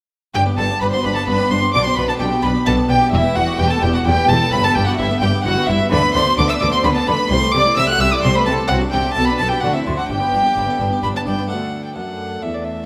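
Lively and festive, this excerpt from a baroque-style concerto movement moves in a straight triple metre, with solo episodes set against the full string band. A single period-style violin sits up front with gut-string tone and light vibrato, carrying the melody alongside a violin section that also plays the melody from the background with a smooth top. A rich chamber violin section plays a second line, while a close, reedy viola section and a bright, plucked French-style harpsichord fill in the accompaniment behind them. Cello and double bass sections, both bowed with gut strings, anchor the bass from 0.4 seconds, though the double bass drops out at 11.4 seconds just as a brief new section begins on a D chord at 11.5 seconds. The harmony moves from G through E minor, B minor and A minor seventh colours before cadencing back to G, and the whole passage sits in a wet recital-hall reverb that gives the ensemble a warm, resonant bloom.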